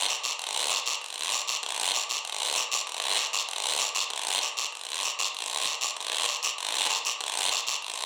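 Latin percussion with a fiery, passionate edge, this short cut from a longer piece features a raspy acoustic guiro alone, sitting up front in a live room with light reverb, playing a straight 4/4 feel from 0.1 seconds and moving into a new section at 2.9 seconds.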